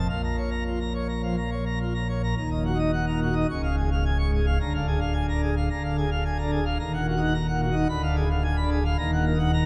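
A solo pipe organ opens on full plenum with brilliant mixtures and a romantic voicing, sitting up front in this dramatic, majestic toccata excerpt at 108 BPM in straight 4/4. Spanning Db1 to Db6, it moves from Bbm into a new passage at 2.4 seconds that passes through Ebm, Db, Bb7/D and Ddim7 before settling on Ebm at 9.0 seconds. A wet church reverb with a 3.2 second decay gives the piece a dark, warm production.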